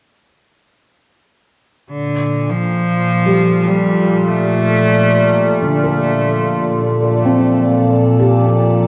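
Ambient music, weightless and luminous, cut from a longer piece and resting on a single Bbmaj7 chord. A lone bowed cello enters at 1.9 seconds with a reedy, gut-string melody in a period style, its light vibrato trailed by delay. Moments later, an evolving, detuned wavetable pad sits bright and up front with sustained chords. At 2.5 seconds a resonant drone joins it, its moving overtones carried by chorus and reverb. From 3.3 seconds a felt-muted upright piano adds soft, intimate arpeggios with audible action noise and a thick-felt, vintage character, echoed by delay. The whole is bathed in a wet scoring-stage reverb with small room ambience, and it carries the worn, warbling pitch drift of old cassette tape.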